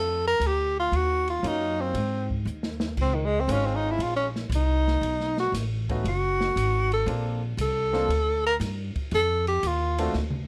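A breathy tenor saxophone leads this relaxed, playful snippet of small-group swing and bop, soloing up front with vibrato and scooped notes over changes that move from Dm7 through Dbmaj9 to Bbmaj7. A woody pizzicato upright bass with steel strings also sits up front, while a clear, intimate baby grand piano comps softly, its action noise audible. An open jazz kit with dark cymbals and a punchy kick joins at 0.4 s and drops in fills at 2.5 s and 10.1 s, all captured with close, detailed microphones and light reverb in a section cut from a longer piece.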